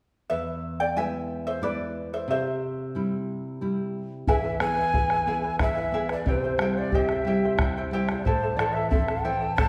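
Shimmering, fingerpicked charango and a dark, woody nylon-string guitar open this melancholic yet festive Andean folk piece in 3/4, joined at 4.3 seconds by a breathy, mellow quena melody with vibrato and a crisp chiff and by a deep, close bombo, with the ensemble heard in the reverberant space of a church or concert hall.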